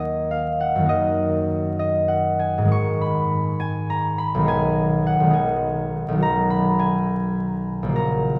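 A dark, reverberant sound fills the recording, with a cathedral echo lasting about 5.1 seconds and a vinyl crackle beneath. A solo concert harp sits up front, acoustic and fingerpicked, its ringing tone ranging from A#1 up to Db6 across this 8.4-second passage cut from a longer piece. The classical, peaceful, dreamy music moves at 68 BPM in a rubato 6/8, tuned to A4 = 442 Hz. The harmony begins on Eb minor, passes through Ab minor at 2.7 seconds, and settles on B at 6.2 seconds. The warm, unhurried playing and the long echo give the brief passage a spacious calm.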